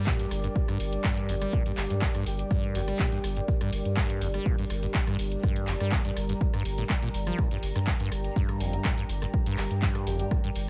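In a lightly reverberant mix, this hypnotic, driving acid house excerpt in G minor moves at 123 BPM over a single Gm chord. An up-front punchy kick and an analog drum machine's handclaps, hi-hat and rim click, both re-recorded in a large room, are joined by a jingly tambourine, while a squelchy, resonant sawtooth acid bass riff with tube saturation and dub echo rides over a round, deep analog bass, both pumping against the sidechain. A detuned analog pad and a moody ambient pad with its own reverb sustain with chorus and the same pumping, and a breathy, flute-like synth lead surfaces in the background on G4 at 2.3 seconds and again at 10.1 seconds.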